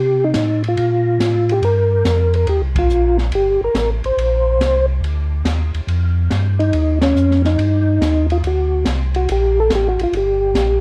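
A worn, warbling cassette sound with drifting pitch and light reverb wraps this short cut from a longer soul jazz organ trio piece, giving it a bluesy, smoky air and a swinging feel. Up front, a soft, flute-like percussive tonewheel organ carries the melody in its middle register, clean and mellow with second-harmonic percussion, chorus vibrato and a slow rotary speaker. Beneath it, a second tonewheel organ supplies the bass line, piping and scooped, lightly overdriven with transformer saturation, also turning through a slow rotary speaker with chorus vibrato. An acoustic jazz kit in a small room sits further back from about 0.3 seconds, with dark ride and hi-hat cymbals, a high-tuned snare and a boomy kick. The trio hits band accents at 2.7 and 6.9 seconds as the harmony moves from C7 through Gm7, Eb7 and D7 before settling on Gm.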